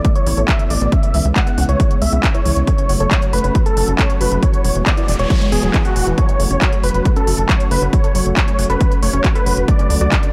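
A straight 4/4 pulse at 137 BPM, driven by a heavy, overdriven electronic kick up front and a techno kit of handclaps and smooth hats pumping under sidechain, carries this soaring, euphoric uplifting trance excerpt in F# minor, where a tight, dark sequencer bass enters at 0.3 s beneath a thick, chorused unison pad and a detuned background pluck playing filter-swept arpeggios through tape echo, while a huge, bright supersaw lead sings the melody with low-pass filtering and echo, a noise sweep sounds from 4.8 to 6.2 s, and chords move from Asus2 through C#m7, F#m and Eadd9 to Dmaj7 in a digital ambience.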